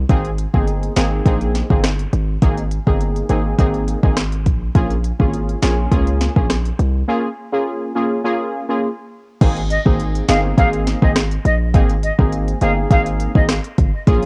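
Sunny, summery dancehall at 103 BPM in Ab major, cut from a longer piece, where a heavy, sine-based 808-style bass with a noise layer and an up-front electronic afro-pop drum kit with deep kick, sharp snare, smooth hats and a tape-warm sound drive a punchy, detuned, wave-folded synth brass stab with filter sweep, chorus and sidechain pumping over Abadd9 and Bbm7 chords, a break arrives at 7.1 seconds, and a distant, airy jazz flute with vibrato, chiff and tape echo enters at 9.7 seconds, all on a dry cassette home recording.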